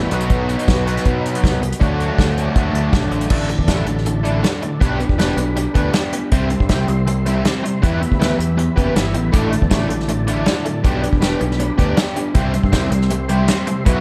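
A straight 4/4 pulse at 159 BPM drives this restless, cool indie rock excerpt, where an up-front acoustic drum kit played with bundle sticks, punchy overdriven fingered bass, a biting overdriven guitar riff and a bright, compressed fuzz guitar with analog chorus churn over a smooth tonewheel organ sitting in the background on slow rotary speaker, moving from B and D into a cycle of Asus4, G, C and Em after 3.3 seconds, all within a dark production touched with light reverb.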